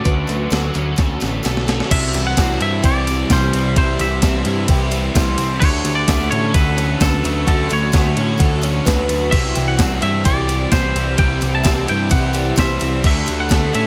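A hazy, light-reverb sheen of digital ambience wraps this dreamy shoegaze and dream pop rock excerpt at 129 BPM, where a thumpy, gated 80s drum machine and a growling overdriven bass sit up front, a twangy guitar melody warbles with slapback echo over biting chorused, hollow-body reverse-reverb and double-tracked distorted riffs (the last entering at 1.9 s after a drum fill), a shimmering octave-doubled twelve-string arpeggio, a blurred granular cloud pad, and a faint jingly tambourine, all shifting between Dmaj7 and C.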